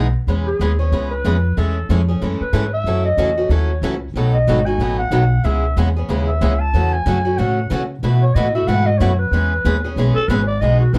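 A growling clarinet takes the solo from 0.3 seconds, its raspy, subtone voice sitting up front with light vibrato and scooped notes, yet carrying a roomy, distant air. Behind it, this lively, charming slice of acoustic string swing in the jazz manouche style moves at 186 BPM in 4/4 with a swung feel, in E major and tuned slightly low to A4 = 437 Hz. Two picked acoustic guitars play accompaniment throughout: an old ladder-braced guitar with old strings and a dark, woody, boxy tone, and a bright steel-string concert guitar with audible finger squeak. A gut-strung upright bass, plucked and thumpy, sits prominently underneath. The chords cycle from E6 through Amaj7/E, F#m7, B7, C#m7, A6 and B7sus4 before returning to E6, all within a dark, warm production with light reverb, cut from a longer piece.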